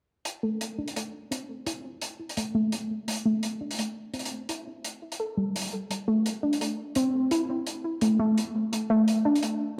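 Half-time drum and bass with a spacious, heavy mood and a 16th-note swing, this excerpt sets a warbling, dusty lo-fi sawtooth pluck up front, playing mellow arpeggios with chorus, analog delay and a filter sweep throughout, over a dark, smooth acoustic hi-hat with a rolled-off top from 0.3 seconds, all soaked in a lush hall reverb for a dreamy haze.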